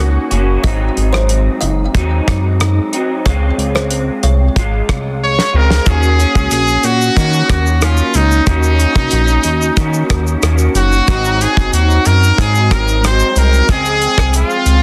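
A dense, heavily limited mix with light reverb and small-room ambience carries this lonely, hazy indie-pop and bedroom-pop excerpt at 92 BPM in Eb dorian, where a glossy, nasal chorused synth bass sits up front under a slightly broken-up, lo-fi electric guitar with ensemble chorus and vibrato, a dry, damped 70s drum kit with a fat snare and tight kick, both softly clipped, drives the straight 4/4 feel, a woody kalimba adds a background line with analog chorus and delay from 0.6 to 4.4 seconds, and after a brief opening phrase a brilliant, punchy trumpet with scooped notes, lush chorus and delay returns alongside a drum fill to carry the melody from 5.2 seconds.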